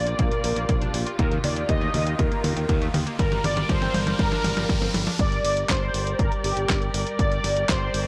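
Melodramatic and danceable, this italo disco excerpt sets a detuned, brassy synth lead with chorus and tape echo over a dark, bowed chamber string section roughened by 12-bit sampler grit; a round analog pluck arpeggiates in the background until 5.2 seconds alongside an electronic riser from 0.9 seconds, while a growly, bright fingered bass with tube saturation, a punchy analog kick and a sampler-style drum machine with a fat snare, handclaps, hi-hat and toms drive it all, with light reverb and a gritty cassette sound.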